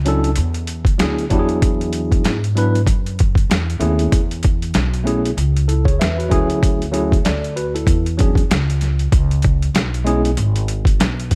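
A pizzicato upright bass opens this short jazz-hop excerpt at 0.0 seconds, its woody, growly tone sitting up front in the mix. A moment later a worn, slightly out-of-tune tine electric piano joins with clean, mellow chords heard through its built-in speakers. A boom bap sampler-style drum kit enters at the same time with hi-hat, a thumpy kick and a medium-tuned snare, its pitched-down, compressed sound pushed gritty by overdrive. The groove moves at 96 BPM in 4/4 with a lazy swing on the sixteenths. Jazzy extended harmony drifts from Bm11 through E9, Amaj9, Dmaj9#11 and E13 before a brief closing passage on C#7(no3) from 9.1 seconds, where the piano drops out at 10.3 seconds and bass and drums carry on alone. Vinyl crackle hangs over the dry, close sound, giving the cool, mellow mood a dusty, lo-fi character.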